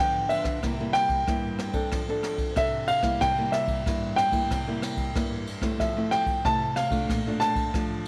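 Light reverb and a touch of studio ambience give this short, festive cut from a longer samba and choro piece an intimate, close-up sound. A warm baby grand piano carries the melody in its upper register, its notes natural and short in sustain, standing up front as a solo across the full 8.1 seconds. A small, dark nylon-string guitar, fingerpicked, supplies the accompaniment from the first moment, spanning a broad range from low bass notes to the middle register. A jazz brush drum kit joins at 0.3 seconds with a punchy kick, dark cymbals on the ride and rim clicks, its acoustic brushes sitting forward in a studio room. The straight, sunny groove moves through G7, C7 and F6, returns to C7, and then settles onto Fmaj7 and Bbmaj7.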